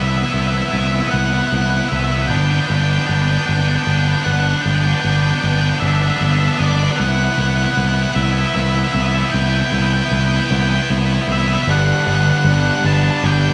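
A light studio reverb frames this soaring, cinematic post-rock fragment in G major, moving in a slow 6/8 at 51 BPM, where a dark, fuzzed octave lead guitar carries the melody over a bright, double-tracked and overdriven stack guitar riff and a growling, up-front fingered bass, building from the start through Cmaj7 and G until a shift to Gmaj7 at 11.7 seconds opens a new section before the cut at 13.5 seconds.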